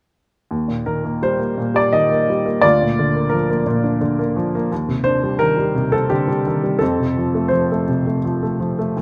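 A 3/4 pulse at 85 BPM moves with rubato freedom in this lyrical classical fragment for solo upright piano, set in Eb lydian and tuned slightly low to A4 = 438 Hz. The piano sounds woody and intimate, with its action noise audible under close, detailed microphones and light reverb, playing from 0.5 to 9.0 seconds across a range from D2 to Eb5. Harmonies pass from Eb through Bb/D and Cmadd9/Eb to F, giving the short passage a hopeful, warm glow.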